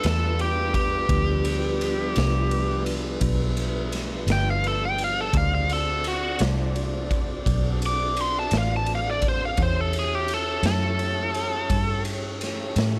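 A dry, up-front sound carries this laid-back, rollicking slow blues in 12/8 at 57 BPM, cut from a longer piece, where a biting, overdriven lead guitar solos over G7, D7 and A7 until 12.0 seconds, backed by a dark, round, foam-muted fingered electric bass, a gritty, boomy garage drum kit with kick, snare and ride, a clean tonewheel organ turning through a slow rotary speaker, and a close-miked saxophone section holding vibrato-laden chords in the background.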